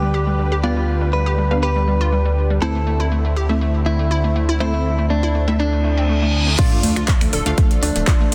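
Dense, heavily limited and lightly reverberant, this progressive house excerpt carries a bittersweet yet driving mood in a straight 4/4 metre. A fat, detuned analog bass sits up front with sidechain pumping, under a lush sawtooth pad that breathes in the background with chorus and a slow attack. A clean, picked electric guitar recorded direct carries the melody with vintage 12-bit sampler grit and dub echo, while a crystalline wavetable pluck warbles through chorused arpeggios and a punchy unison pluck adds stabs, both pumping and echoing. The harmony moves from G/D to Am/D, and a reverse cymbal with a sub drop rises from 5.8 seconds. At 6.6 seconds the drop lands on Dm with an impact, as an overdriven, punchy electronic kick and a big-room kit of crash, metallic hats, finger snaps and handclaps crash in with studio reverb.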